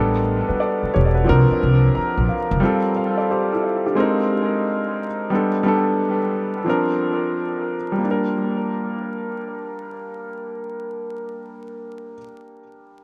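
Sultry and smooth, this R&B excerpt moves at an unhurried 89 BPM in 4/4, with a 16th-note swing that gives it a relaxed lilt. A clear, intimate grand piano carries the accompaniment throughout, its long sustain and audible action noise sitting up front while a dub echo trails behind its chords. An acoustic upright bass, woody and thumpy under pizzicato playing, is heard only at the start before dropping out at 2.6 s, just as the piano finishes a short fill that begins at 1.6 s. The harmony drifts through suspended ninth chords on A, C, G and Bb before settling on G minor at 8.0 s, where a new section begins. Light reverb, an echo-heavy mix and a layer of vinyl crackle give the recording a hazy, late-night character.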